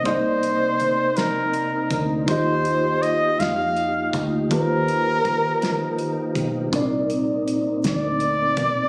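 Sultry and yearning, this slow six-eight R&B passage in C minor moves at 54 BPM, cut from a longer piece. A flugelhorn sits up front with the melody, its warm, vibrato-laden pop-style tone carried by plate reverb and tape echo. Beneath it, a mellow tine electric piano plays clean accompaniment through its built-in speakers, while a tonewheel organ holds sustained chords very quietly, its chorus vibrato, key click and slow rotary speaker adding a smooth shimmer. A deep dub fingered electric bass, dark, round and foam-muted, enters at 0.1 seconds alongside a dry, acoustic 70s drum kit with a fat snare, tight kick, hi-hat and a rolled-off top. The harmony moves from Cm9 to Ebadd9 at 2.3 seconds and back to Cm9 at 6.7 seconds, all captured on a phone in the room with light reverb, studio reverb and compression.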